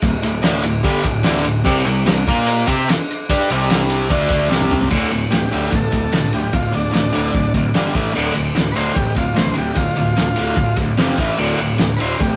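A double-tracked fuzz guitar leads this raw, swaggering garage rock clip, its bright, compressed riff sitting up front in a rough rehearsal-room sound with light reverb. Beneath it, a picked electric bass growls with punchy overdrive, while a cloth-damped drum kit thuds along in a straight 4/4 with a fat snare, tight kick and dark, muffled cymbals that feel gritty and lo-fi. Very quiet, crisp group handclaps join at 2.1 seconds. A drum fill at 4.5 seconds opens the second half, where a vintage combo organ enters at 5.3 seconds for a buzzy, clean solo drenched in heavy vibrato and tape echo. The clip is cut from a longer piece.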